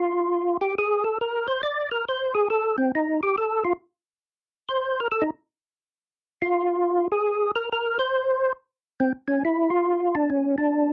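Jazz with a swinging, greasy mood, this short clip from a longer piece moves at 138 BPM in 4/4 with a 65% swing on the eighth notes. A percussive tonewheel organ carries the solo, sitting up front with a warm, fat, lightly overdriven tone that stays between C4 and D5. Third harmonic percussion and audible key click give each note a crisp front edge, while chorus vibrato and a slow rotary speaker add a gentle, moving shimmer. The organ's solo runs from the start to 9.4 seconds, where the music shifts into a new section that continues until the clip ends at 10.9 seconds. Light reverb and the soft grain of cassette tape lend the recording a worn, intimate character.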